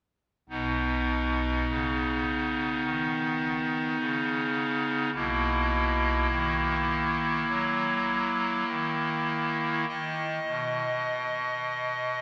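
Bathed in a long, wet church reverb, this brief, serene and majestic fragment of a classical chorale-style piece in B major unfolds at a slow, rubato 51 BPM on a solo pipe organ clarinet stop, its hollow, romantically voiced reed tone shimmering with tremulant and sitting up front as the harmony moves from B to F#7/B at 5.1 seconds before settling back on B.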